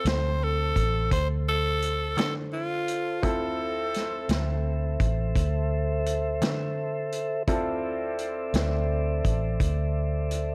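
Slow, smoky and soulful, this 12/8 blues in D minor at 57 BPM rests on a single Dm9 chord: a raspy, growling tenor saxophone with vibrato sings the melody up front until 4.6 seconds, while a brilliant, woody upright piano plays short-sustained accompaniment, a mellow, flute-like tonewheel organ holds soft chords through a slow rotary speaker, a dark, round, foam-muted electric bass anchors the low end, and a saturated vintage kit with a tight kick, medium-tuned snare and hi-hat adds gritty, rolled-off grooves, all set in light reverb.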